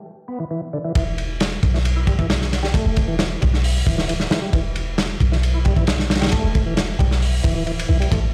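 A percussive tonewheel organ riff opens at 0.3 s over an E5 chord, fat and lightly overdriven with key click, chorus vibrato, a slow rotary speaker, a low-pass filter and digital delay, before the drop at 1.0 s moves to Em and brings in a deep, boomy 808-style sine bass with a noise layer and a crunchy, gritty, saturated breakbeat kit up front with punchy kick, medium-tuned snare, dark cymbals and a rolled-off top, giving this swaggering, funky 134 BPM breakbeat fragment in E minor, cut from a longer piece, the sound of a big system in a bare room with large studio reverb.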